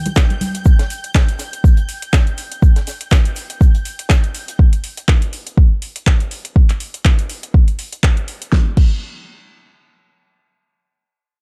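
A swung 122 BPM deep house groove in 4/4 rides on an up-front, deep electronic kick and a tape-warm house kit of fat snare, handclaps, metallic hi-hats and crash, with thick-skinned congas only at the opening, a dry, high-tuned reggae kit with snare, hi-hat and shaker tucked in the background, and a silky, chorused analog string pad with vibrato hovering until 4.6 seconds, in a dark, hypnotic, late-night production cut from a longer piece.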